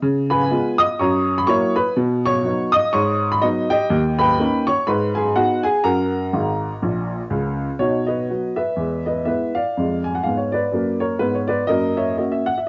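Swinging eighths drive this exuberant stride jazz fragment, cut from a longer piece, in which a solo upright piano with a woody, slightly detuned, vintage tone sits up front through moderate spring reverb and the muffled haze of a home cassette recording, playing a fill from 6.3 s before moving into a new passage at 7.8 s over chords such as C#7, G#m7 and Fdim7.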